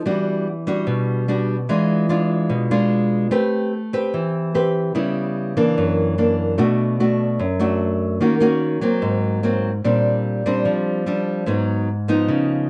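Sunny and sophisticated, this short bossa nova excerpt at 147 BPM features a lone fingerpicked nylon-string guitar, small and up front with fresh strings, moving through rich jazz chords such as Em9, C#m7b5, F#aug7 and Bb69 in a dark production with moderate studio reverb, tuned slightly high to A4 = 441 Hz.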